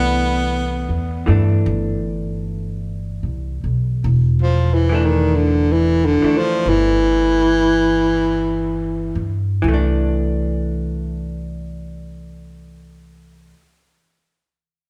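Jazz ballad in C major with an intimate, late-night mood and a gentle swing, slowing down within its 37-54 BPM range, where a breathy baritone saxophone sits up front with subtone, vibrato and a whispered soft attack to carry a solo melody over a C69 chord until 9.4 seconds, while a dark, clean, compressed electric hollow-body guitar accompanies until 13.7 seconds and a woody, thumpy pizzicato upright bass on gut strings anchors the low end, the trio heard playing live in one room and bathed in a lush large-studio reverb.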